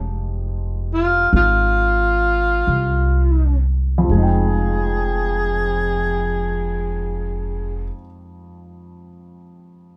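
A smoky, intimate jazz ballad fragment opens on an Fm9 chord, with tenor saxophone, upright bass and baby grand piano all sounding together in a slow swing. The saxophone carries the melody up front in a soft, breathy subtone, its whispered notes scooped into with a gentle attack and a mellow vibrato. Beneath it, the plucked upright bass sits equally forward, woody and growly with a thumpy low end, while the piano supplies a warm, present accompaniment at a lower level. The band eases the pace during the first 4.1 seconds, and the light reverb gives the sense of players sharing one room. Saxophone and bass stop at 7.9 seconds, leaving the piano alone until 10.0 seconds.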